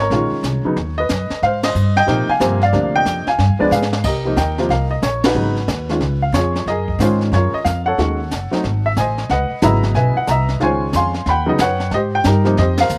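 This short excerpt of a sophisticated, swinging jazz piano trio opens with an intimate baby grand carrying the melody, its action noise audible and its notes quick to fade, over a woody pizzicato upright bass, both up front, with a brushed kit joining almost at once. At a brisk 183 BPM in 4/4 with a swung feel in Ab major, the tune moves through rich extended and altered harmony. The drums sit lower in the mix, with dark cymbals, a high-tuned snare and a boomy kick, and add a brief fill at 3.7 seconds, while the whole band hits accents at 1.6, 5.2 and 12.7 seconds in a dry, close sound.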